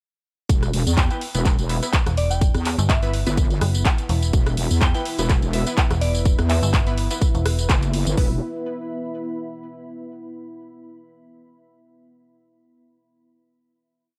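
A gritty, bouncy bass house drop in E minor at 125 BPM with a swung sixteenth feel opens at 0.5 seconds on a punchy four-on-the-floor kick with bright hats, layered claps, rim clicks and tambourine, and a heavy, saturated, pumping wobble bass whose modulated phrases change wobble speed, joined by a soft, warbling FM bell with chorus, phaser and delay in the background, bold detuned orchestra-hit-like synth stabs playing syncopated chords in one parallel shape, a metallic, chopped FM bass answering the wobble from 2.1 seconds, and two deep, moody sawtooth pads with chorus and reverb, one of which sustains the final chord until 10.1 seconds.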